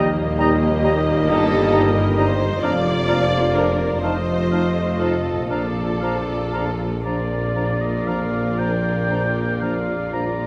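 In a rubato 12/8 pulse of 38-45 BPM, this tender, serene slow romantic movement in Bb major opens with muted, veiled violins carrying the melody over airy flute, oboe and quiet clarinet lines, with a second muted violin line joining at 1.3 s, while mellow bassoon and violas provide accompaniment, very quiet dark horns and bright trombones hold sustained chords, a thumb-plucked harp rings out arpeggios, a close-miked trumpet adds stabs, and cellos, double basses and a roomy tuba anchor the bass, all bathed in wet scoring-stage reverb in this fragment of a longer piece.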